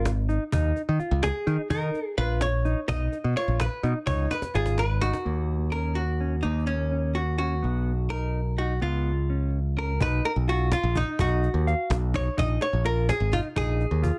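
Densely limited and lightly reverberant, this brooding, driving progressive instrumental in 5/8 puts a punchy, bright picked electric bass up front alongside a dark, compressed hollow-body archtop guitar that carries the melody as a jazz-tinged solo through the opening 5.3 seconds. A mellow, clean fingered electric guitar weaves plate-reverbed arpeggios underneath, while a snappy, close-miked cajon played with hard hands drives the groove, plays a fill from 4.3 seconds, drops out, and returns at 10.0 seconds. Harmony moving through major-seventh, dominant-seventh and minor-seventh chords sits beneath the band before settling on B and Bb5 as this cut from a longer piece ends.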